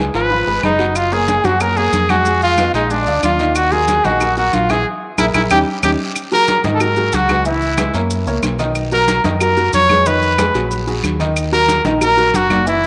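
Sultry and driving, this Afro-Cuban jazz excerpt moves at 184 BPM in a straight 4/4, with a bright, up-front trumpet carrying the solo melody in scooped notes with light vibrato. Behind it, a woody upright piano with short sustain and a round, dark fingered electric bass hold down the harmony, while a very quiet, hollow concert flute adds a pure second line and congas, claves and raspy guiro fill out the background percussion alongside close, grainy maracas. A wet spring reverb colors the sound, the band hits an accent from 4.9 to 6.2 seconds, and the key shifts from Eb minor to G# minor at 6.2 seconds.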